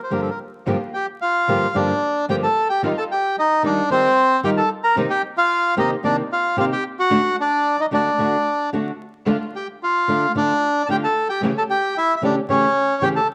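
Melancholic and sultry, this G minor tango fragment at 112 BPM moves with a rubato feel as a reedy, mid-forward bandoneon carries the melody up front over warm, fingerpicked flamenco guitar accompaniment, while a dark, veiled, con sordino string section adds very quiet bowed stabs from a distance, all set in a small room with moderate spring reverb and a layer of vinyl crackle.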